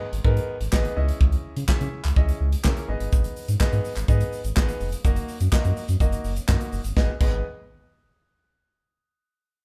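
A straight 4/4 groove at 125 BPM drives this driving, bittersweet dance-pop clip in G# minor, cut from a longer track. An up-front, polished acoustic drum kit sets tight kick, medium-tuned snare, hi-hat, shaker, handclaps and crash cymbal in an airy studio room, while a deep, full sub bass with an added octave holds sustained sine-and-triangle tones with a fast attack. A clear, present baby grand piano accompanies over G#m, C#madd9 and D#m/F#, returning to G#m at 7.0 s; the band sounds as if playing live together in one room under light reverb, and every part stops by 7.4 s.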